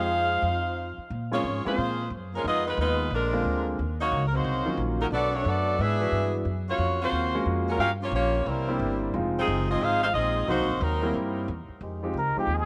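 A brassy, dramatic big band swing passage in Bb minor opens with an edgy, close-miked saxophone section carrying the melody up front, touched with light vibrato and a tape echo, while a mellow trombone section sits distant and roomy in the background on a second line. Underneath, a clear concert grand piano with deep bass and long sustain supplies the accompaniment, and a woody pizzicato upright bass drives the bottom at a brisk 179 BPM with a swing feel on the eighths. The harmony moves through minor sevenths, half-diminished chords and dominants, sliding from Bbm7 through Ebm7 and Gbmaj7 toward a C7 before settling on Fm9. Near the end the horns give way to a dark, tight saxophone section holding sustained chords from 11.8 seconds, and a brilliant trumpet with a plunger mute cuts in with a wah-wah melody at 12.2 seconds. Light reverb and small room ambience frame this short cut from a longer piece.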